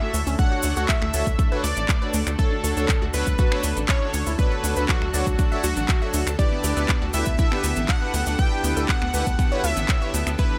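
A straight 4/4 pulse is set by a punchy, tape-warm electronic kick from 0.4 s, with the house drum kit's finger snaps, handclaps and metallic hi-hats, a grainy cabasa in the background, and a tight sawtooth sequencer bass pumping up front. This hopeful, uplifting progressive house passage is cut from a longer piece: a catchy, full-bodied unison lead with a filter sweep and delay carries the melody over a lush, thick pad with chorus, soft airy supersaw stabs and round, detuned analog pluck arpeggios, all pumping with the sidechain. The chords move from Dmaj7 to Em7 at 6.4 s, and light reverb with a digital ambience surrounds the mix.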